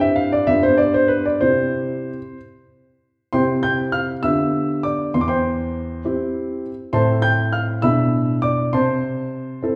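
A classical-period piano sonatina excerpt in C major, elegant and cheerful, moves at 66 BPM in a rubato 6/8 as a solo grand piano with an intimate, natural tone and audible action noise sits up front, ranging from E2 to G6 through two statements of its opening theme that shift from G7 and C toward A minor, set in a wet recital-hall reverb heard from further back in the room.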